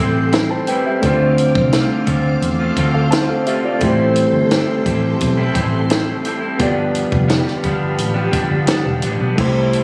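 A laid-back, dreamy indie and bedroom pop excerpt at 86 BPM opens with a twangy, slightly broken-up electric guitar through a small old amp, drifting warbly under lush chorus, alongside a reedy electric piano with a cassette-tape tint, a mellow phased organ-string pad and a round, foam-muted fingered bass, before a compact cocktail drum kit with a high-tuned snare and punchy kick joins at 0.3 seconds, all moving through Am7, Dm7 and G7 in a small, lightly reverberant room captured on a phone.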